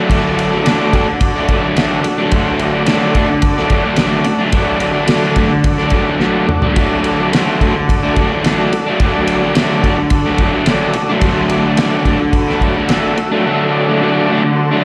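Garage rock with a raw, swaggering mood at 108 BPM in D major, this excerpt sets an up-front, crunchy, double-tracked picked guitar riff over buzzy vintage combo organ chords drenched in heavy vibrato and a dry, thuddy cloth-damped drum kit with a fat snare and dark cymbals that plays a fill at 6.2 seconds and drops out at 13.3 seconds, after which the guitar riff carries on as the organ adds a final fill at 14.6 seconds, all heard as a live gig through the venue's PA with small room ambience and recital hall reverb.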